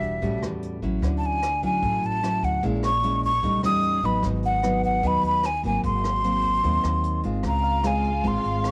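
A straight 4/4 bossa nova groove at 150 BPM carries this smooth, melancholic excerpt, cut from a longer piece and moving through chords such as Dmaj9, A#m7b5, A7#11 and G#9 before settling on C#maj7. Up front, a breathy, hollow metal jazz flute sings the melody with vibrato and tongued notes, its highs lifted, while a full-bodied nylon-string guitar is fingerpicked in a deep classical manner beside it, colored by cassette tape. Underneath, a woody pizzicato upright bass with steel strings anchors the low end. A jazz brush drum kit sits distant and roomy in the background, with a boomy kick, hi-hat and rim click, its top rolled off and also touched by cassette tape. Near the close, a dark, lush symphonic string section enters at 7.4 seconds with bowed, expressive sustained chords marked by vibrato and portamento, and a clean, very quiet tine electric piano joins at 7.6 seconds. The whole has the feel of a home recording on cassette bathed in studio reverb.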